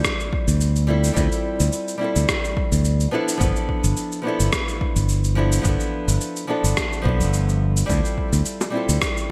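A small, fingerpicked nylon-string guitar opens this wistful sunset chillout cut at 0.0 seconds, sitting up front with a digital delay trailing its accompaniment over Dm11 and G13 chords in D dorian. An electronic kick and a rim click paired with cabasa start alongside it, the kick layered, punchy and overdriven, the rim and cabasa gritty, tape-warm and sampler-like with a gated reverb and a large-room sheen. At 0.5 seconds a bright, growly fingered electric bass comes in close and direct, standing as the most prominent part in its low register. The groove moves at 107 BPM in 4/4 with a gentle 16th-note swing, and the harmony returns to Dm11 near the close. Low-tuned, round bongos touch in softly for a brief moment at 8.6 seconds, all framed in a light digital ambience and a bright 1980s-style production.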